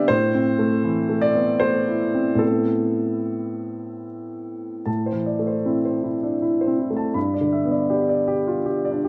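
A solo upright piano carries this wistful, intimate piece of neoclassical minimalist music, its woody, natural tone placed up front in the mix. Played in A minor and tuned to A4 = 442 Hz, it moves in a rubato 3/4 at roughly 72-82 BPM, reaching from G2 up to B5. The harmony opens on an Amadd9 chord, settles onto a plain A minor as a new section begins at 4.9 seconds, and turns to G at 7.2 seconds. A moderate recital hall reverb gives the instrument a sense of space, while the dark, warm production keeps the mood close and reflective. This brief fragment runs just over nine seconds and is cut from a longer piece.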